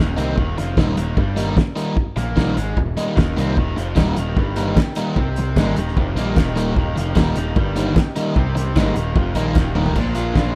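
An overdriven electric guitar riff and a punchy fuzz bass open this wistful, jangly indie rock excerpt at 150 BPM in Eb major. They are joined almost at once by a crunchy, up-front second guitar with analog chorus and slapback echo, and a loose drum kit with a fat snare and dark cymbals. A lush, warbling sawtooth pad slips in with sustained chords at 3.6 seconds, very quiet group handclaps sound distant from 4.0 seconds, and a drum fill at 9.6 seconds leads to a closing Bb7, all in a rough home-demo mix with studio reverb.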